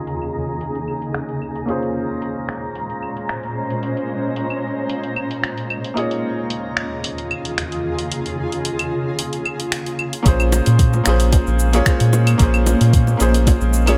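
Sunset chillout in a relaxed, wistful mood: a clear, worn grand piano with vintage 12-bit sampler grit and digital delay plays over a shimmering, ethereal chorused pad and a faint twinkling granular texture, while a tape-warm electronic R&B kit of claves, finger snaps, hi-hat and shaker keeps a straight groove through a filter sweep that runs until 10.3 s, when a deep, round, up-front analog bass and a soft electronic kick arrive, followed at 10.5 s by low-tuned bongos in the background.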